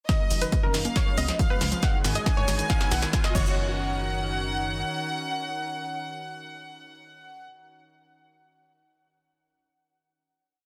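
Dense, heavily limited modern production with light reverb frames this euphoric trance piece, where a lush, detuned unison pluck plays a repeating riff over a thick, bright chorused pad, doubled an octave higher by a very quiet, clear baby grand piano and joined by a reedy, gut-string chamber violin section with light vibrato. Meanwhile, a warbling vintage pluck arpeggio loops in the background, a funky sawtooth bass pulses off the beat, and a punchy tape-warm kick, programmed hats, snare, congas and crash, and a grainy distant cabasa drive the build and drum fill. A faint riser enters at 1.9 seconds, and the melody, pad, piano and violins ring out on a final hit from 3.6 seconds.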